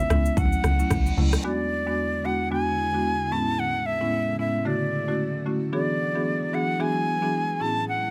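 Breezy and romantic, this short afrobeats excerpt at 112 BPM in E mixolydian, cut from a longer piece, sets a breathy, reedy silver flute melody with vibrato over a woody, smooth marimba accompaniment, while a round, percussive log drum bass, a produced electronic kit with deep kick, rim click and shaker, very quiet bright congas and an electronic reverse cymbal all drop out by 1.4 seconds, and a blurred granular cloud pad enters at 2.2 seconds in the background beneath chords moving from Dmaj7 through E7 to Amaj7 in a light reverb.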